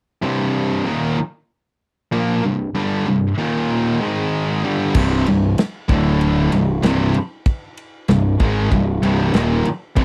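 Heavy metal in C minor at 96 BPM, epic and aggressive, opening with two bright, high-gain distorted guitars, one of them scooped, playing a picked riff together from 0.2 seconds over a Cm, Eb5, Ab5, G5 progression. At 4.9 seconds a tight-kicked, mid-forward acoustic drum kit with a medium-tuned snare, crash and ride enters, joined at 5.0 seconds by a growly, fuzz-overdriven picked bass as the chords move through C5 and D5 back to Cm. The sound is dry and close in a 1970s studio manner, with every part placed up front, and the clip is cut from a longer piece.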